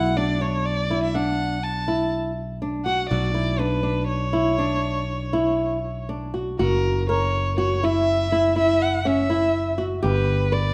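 A fingerpicked flamenco guitar opens this short contemporary chamber piece, its acoustic tone sitting up front as it spins arpeggios through an uneven seven-beat meter with a straight feel. A single bowed violin carries the melody, with a focused sound, a smooth top and a vibrato that give the line a warm glow. Underneath, a picked electric bass adds a bright, growly, punchy low end that sounds direct and amped. The mood is hypnotic yet urgent, and the harmony rests on B minor before moving to F#7 at 6.6 seconds and touching G at 10.0 seconds. A reverberant recital hall ambience surrounds the trio in this passage cut from a longer work.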